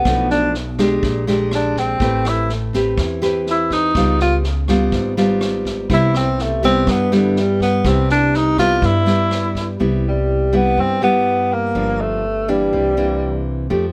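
A mellow tenor saxophone and a fingerpicked nylon-string guitar open this relaxed, sophisticated bossa nova excerpt together, moving at 123 BPM in a straight 4/4 feel in C major. The saxophone carries a jazz-style solo melody with vibrato, its tone sitting in a distant, roomy space while still standing out front. The guitar sits close and intimate, its warm classical sound catching the occasional finger squeak, while a pizzicato upright bass with gut strings adds a woody, thumpy low end. A drum kit with a punchy kick, rim clicks and a medium-tuned snare, its top end rolled off, plays softly in the background until about 9.6 seconds. The harmony drifts through colourful jazz chords such as Bm7b5, Am9, Db7#11 and Cmaj7. After a shift into a new section at 9.8 seconds it moves through Gm7 to C9, in a dry, close-sounding recording.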